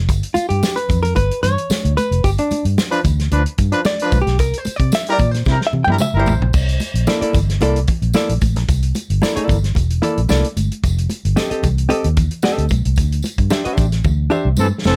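A straight 4/4 groove at 112 BPM drives this energetic, gritty funk passage, cut from a longer piece. Up front, a vintage muted fingered electric bass sounds round and foam-muted beneath a soul drum kit with a tight kick, medium-tuned snare, dark cymbals and a rolled-off top. Bright, high-tuned congas and a jingly tambourine sit in the background. A hollow-body jazz guitar, clean, picked and compressed, takes a solo through the opening section over G7 and C before carrying the accompaniment. A horn section with light vibrato and a smooth top enters at 2.9 seconds on a second line, and a drum fill at 5.5 seconds leads into a section built on C13, a rootless F9 and D9sus4. The band hits an accent from 13.0 seconds, with another drum fill arriving at 14.0 seconds, and the horns return briefly at the very end, all in a dry mix with little reverb.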